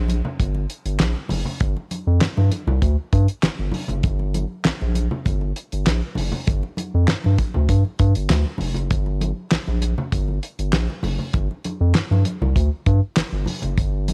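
A round, deep analog bass with transformer saturation sits up front from the start of this sly, hypnotic funk excerpt at 99 BPM, joined at 0.1 seconds by a damped, dry 70s drum kit with a fat snare, tight kick, hi-hat and handclaps, plus softly played, ringing congas, all captured in a small room ambience on a cassette home recording.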